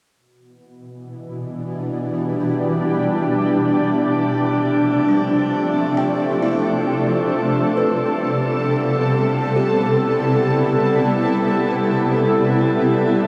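A shimmering, ethereal pad sits up front from 1.1 seconds, holding sustained chords that drift from Em7 through Dm7 to Am9 with slow attacks, long releases and a granular, chorused glow. At 5.1 seconds a buzzing, woody kalimba fades in well in the background, playing short plucked arpeggios through a vintage tape echo. Dark production and a deep shimmer reverb give this ambient fragment a reflective, melancholic mood.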